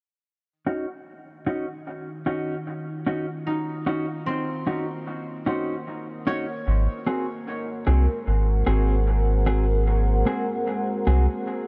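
Dark, clean, compressed electric guitar stabs open this deep, hazy ambient piece under a filter sweep, low-pass filter and dub echo, before a moody, warbling, detuned pad with chorus and vintage 12-bit sampler grit swells in at 1.6 seconds, ringing fingerpicked concert harp arpeggios drift through the dub echo from 3.5 to 8.2 seconds, and a round, soft sub bass arrives up front at 6.7 seconds, all within a light digital ambience.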